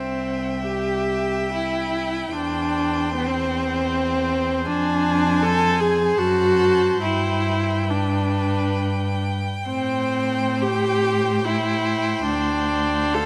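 Classical slow romantic movement for string quartet in C major, tender and warm, unfolding in a rubato 3/4 at 60-80 BPM, with two bowed violins singing with vibrato, one carrying a focused melody and the other a smooth, even second line, above a clear, close viola accompaniment and a rich cello bass, both up front, all set in a moderate concert hall reverb as the harmony moves from C through F#dim and G to Am7 and D7(no3).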